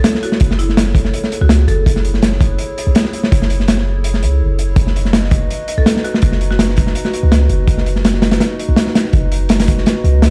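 Drum and bass with a jungle edge at 165 BPM in F# dorian, this raw, frenetic excerpt rides a crunchy, saturated breakbeat kit with a tight kick and rolled-off top, up front beside a deep, sine-like 808-style bass that sustains throughout, while the kick drops out at 9.9 seconds. A warbling, nostalgic pad with chorus holds F#m7 before moving to B/F# at 4.8 seconds, and a woody, bright marimba with hard mallets plays brief melodic phrases in the background at 0.0 and 5.8 seconds, carrying vintage 12-bit sampler grit and dub echo. The whole sounds as if played on a big sound system in a bare stone room, with vinyl crackle on top.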